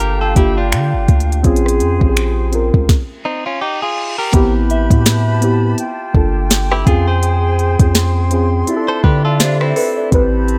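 The sound is set in a digital ambience, with the drums and a deep, boomy 808-style bass sitting up front. This moody, longing contemporary R&B excerpt rides a swung sixteenth feel, its electronic kit built from a soft kick, sharp snare, smooth hi-hats, rim clicks and finger snaps. Muted, felt-like synth keys carry the accompaniment in a dark, intimate tone coloured by chorus and phaser. A clean, direct-recorded electric guitar plays picked, compressed arpeggios, and a small flute group holds pure, vibrato-touched chords that pump with sidechain. At 2.9 seconds the groove stops, and from 3.2 seconds an electronic reverse cymbal bridges into the next section at 4.3 seconds. From 4.7 seconds a gentle, mellow FM synth bell sits in the background with chorus and digital delay over minor-ninth and major-seventh chords.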